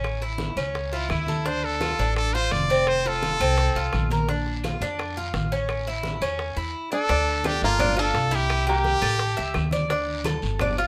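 Sultry and warm, this excerpt of Cuban son in the guajira vein moves at 170 BPM in D minor, with a bright, metallic Cuban tres picking up-front arpeggios over a thumpy, gut-strung pizzicato upright bass, backed by low-tuned congas, tight high-tuned bongos, very quiet woody claves and a raspy guiro, while a brilliant, punchy trumpet with vibrato and scooped notes carries the melody from 0.9 s and again from 6.9 s, where a twangy, fingerpicked bluegrass banjo adds a percussive second line.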